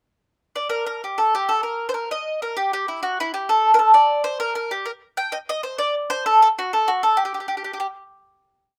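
Italian folk in 6/8 at 130 BPM, set in G harmonic minor with a romantic, wistful mood. A lone mandolin carries the whole short piece from 0.6 to 7.9 seconds, its bright, woody double strings picked up front in a motif-based melody built from sentence-like phrases. The outdoor recording is dry, with little reverb, and the piece closes on a final hit.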